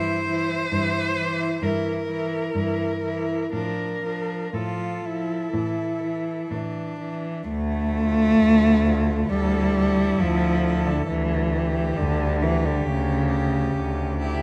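Close, detailed microphones capture a cello ensemble in a moderate recital hall, with a reverb of about 1.4 seconds framing this solemn, elegiac classical fragment in D minor, played in a rubato 4/4 at roughly 59-68 BPM. A clear, smooth, somewhat distant cello bows the melody with vibrato above three rich cellos, also bowed with vibrato: a close, even second line, plus a focused accompaniment and a bass that both sit up front. The harmony moves through diminished and minor shadings over pedal-like bass notes, and a new section begins at 7.5 s on a plain D minor chord before settling toward A7 over D.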